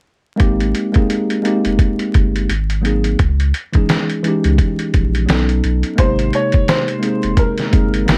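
A compressed, sampler-style drum kit sits up front in this nostalgic, mellow lo-fi hip hop excerpt, its pitched-down, muffled sound built on a thumpy kick, a medium-tuned snare and hi-hat, with the character of a kit re-recorded in a small room. The groove moves at 86 BPM in 4/4 with a gentle swing on the 16ths, in Ab major. A worn, slightly out-of-tune tine electric piano, clean and direct through a low-pass filter, carries the accompaniment alongside a deep, round sine sub bass with a fast attack and long sustain, all three parts playing from 0.4 seconds. The chords drift from Abmaj7 through Ab7, Dbmadd9 and B9 before settling back on Abmaj7. At 6.0 seconds a woody, slightly detuned upright piano enters with a smooth, vintage-toned melody set low in the mix behind its own low-pass filter. Light reverb and vinyl crackle wrap the recording in a dusty, lived-in haze.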